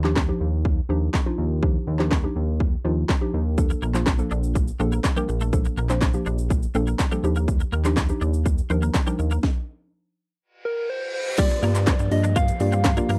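A punchy, overdriven house drum kit drives this summery, upbeat dance-pop excerpt at 123 BPM in a straight 4/4, its layered kick, cracking snare, hi-hat, shaker, handclaps and crash sitting up front with a big-room character. Beneath it, a glossy, retro chorused synth bass and a hollow, bouncy square-wave pluck both pump against the sidechain, the pluck dark and decaying as it outlines chords moving from Ebmaj9 to Bbmaj7 and back. At 3.7 seconds a bright, twangy twelve-string electric guitar enters with a clean, picked riff colored by ensemble chorus. A stop arrives around 9.4 seconds, and a reverse cymbal and downlifter sweep in at 10.6 seconds as a round, keys-like FM lead begins its gentle melody with vibrato and slapback echo. Shortly after the harmony shifts to Gm7, a very quiet ethereal pad and a crisp, human group handclap join, all set in a dry, close studio sound with little reverb.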